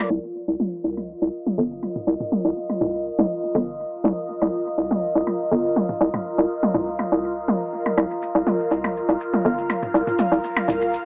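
A dry, gritty hardware sound with transformer saturation and a small-speaker, low-passed character frames this short cut from a longer minimal techno track, set in a moderate plate reverb and held on a single Cm7 chord. The mood is clinical and cool, in a straight four-four feel. Up front, a hollow, bouncy FM bass knocks with a fast attack and punchy decay, while electronic toms and percussion blips sit up front beside it, trailed by tape echo. An airy, breathy pad blends detuned sawtooth and triangle tones with a noise layer, swelling in slowly and sustaining through chorus and phaser. A filter sweep runs across the whole passage, and at 8.0 seconds faint, grainy acoustic maracas join in a close, mellow layer.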